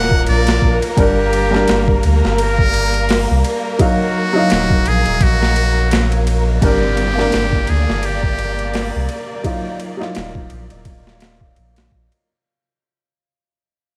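A muted trumpet with a buzzy, thin tone carries the melody over a dark, slightly detuned upright piano with harmonic tremolo and tape echo, lush bowed violins, and a round, deep dub sub bass, all settling into a smoky, cinematic trip hop groove at 85 BPM with a 16th-note swing. A gritty, pitched-down boom bap kit with a thumpy kick, high-tuned snare, hi-hat and ride joins at 0.1 seconds, its overdriven sound set in a large room, while the chords move between Ebmadd9 and Gm. The trumpet drops out at 9.1 seconds as an electronic downlifter sits in the background from 6.6 seconds during the fade-out, all wrapped in light reverb, digital ambience and vinyl crackle.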